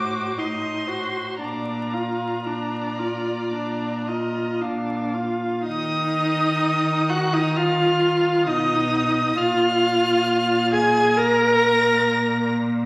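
Soaked in a recital-hall reverb with vinyl crackle, this excerpt from a slow, solemn and yearning romantic movement for string quartet drifts in rubato at 54-70 BPM, with a bowed violin singing the high melody with vibrato and portamento over a darker second violin line, an expressive, up-front viola accompaniment, and a rich, close cello bass that carries on alone after the others stop at 12.5 seconds until 12.9 seconds.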